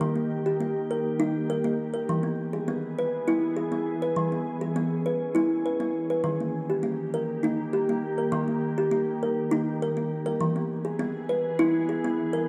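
A woody, hollow-toned kalimba sits up front with short thumb-plucked arpeggios, carrying this gentle, meditative world piece in a straight 7/8 feel. Alongside it, a glassy, ethereal FM pad, also up front, holds slow-attack sustained chords with ensemble chorus and long release, moving between Eb and E throughout. The dark production is bathed in a wet echo-chamber reverb, and this fragment is cut from a longer piece.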